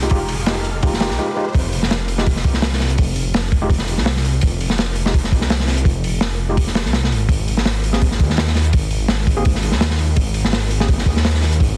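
Dense, heavily limited and dusted with vinyl crackle in a small room, this nostalgic, frenetic drum and bass and jungle cut opens with a 1.5-second build-up, where a background electronic riser, a very quiet reversed, dreamy swelling texture and a faint tape-warm, sampler-style soul kit sit beneath the crunchy, up-front breakbeat kit, the thick, menacing detuned saw bass with tube saturation and barky, overdriven tine electric piano stabs soaked in dub echo, all three of which carry on through the drop.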